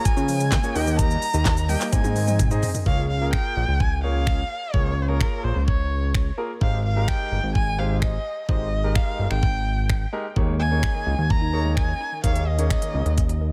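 A dry, echo-heavy mix carries this carefree, upbeat dance-pop excerpt at 128 BPM in Ab major, where a close, bowed erhu sings the melody with vibrato, portamento and analog delay over an intimate concert grand piano pumping with sidechain and delay, a thick detuned sawtooth bass with a filter sweep, a layered pop drum kit of knocking kick, fat snare and crisp hats that rolls into a fill at 1.9 seconds, and a very quiet crystalline wavetable pluck arpeggiating at the start and again from 10.4 seconds.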